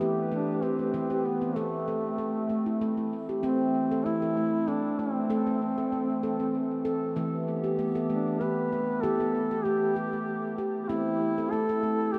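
In a gently swaying three-time with a light swing on the sixteenths, this meditative world excerpt drifts between Em and Am chords, with a new section arriving at 3.4 seconds. Up front, a ringing stainless-steel handpan plays bright, airy arpeggios with sharp finger strokes and delay, beside a solo duduk melody in folk style, mellow and full of vibrato and scooped notes, also touched with delay. Beneath them a dark, warbling, lo-fi pad of detuned square and triangle tones holds nostalgic chords with a slow attack, long release and chorus, and the mix is soaked in a huge, dreamy reverb.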